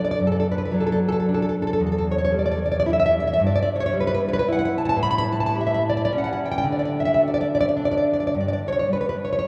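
Romantic solo classical guitar in D major, this nostalgic, tender excerpt moves at 111 BPM in 3/4 with uneven, rubato beats, tuned to A4 = 439 Hz. A single fingerpicked nylon-string guitar sits up front, its dark, full-bodied tone spanning E2 to B5 as it passes from D/F# through Em and A7 to D, settling on G5 at 8.3 seconds. A wet cathedral reverb with a 5.7-second decay surrounds the guitar, setting it in a vast, echoing space.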